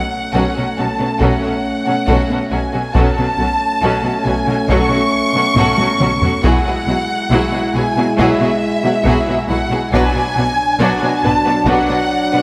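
Recorded on a scoring stage with a moderate reverb, this cut from a longer epic orchestral film cue feels relentless, moving at a stately 69 BPM in a straight 4/4. Up front, a warm violin section carries the melody with expressive vibrato and portamento, while a clear, focused second violin line sits in the background. A lush, intense viola section supplies the accompaniment, and rich cellos and chamber double basses hold down the bass on B, all bowed with vibrato. A dark, distant French horn section sustains roomy, classical-style chords from the very start as the harmony moves from F#m/B to Eadd9/B and settles on Bm. Solo taiko drums, close and dry with heavy sticks, enter at 1.2 seconds and play a fill from 5.6 to 6.4 seconds.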